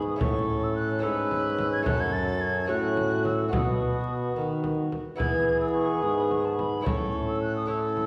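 A close-miked trombone carries the bass up front in this stately, festive renaissance-style consort dance in a straight 6/8, beneath an airy, hollow concert flute melody with vibrato and a crisp attack, a nasal, gut-string viola second line, and a mellow bassoon and bright, fingerpicked lute with double strings in the background, while a deep, dry frame drum joins at 0.2 s, the ensemble heard from further back in a wet recital hall with a layer of vinyl crackle, in a short cut from a longer piece.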